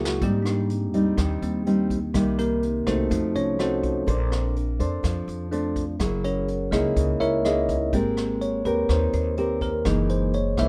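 A brushed drum fill opens this smooth, melancholic bossa nova cut at 124 BPM as a bright, bell-like tine electric piano solos up front beside a dark, thumb-plucked nylon-string guitar, over woody pizzicato upright bass and a vintage brush kit with tight kick and rim clicks, all in a dry room while the harmony moves from Abmaj7 through F7b9 and Bbmaj9 to Gb13.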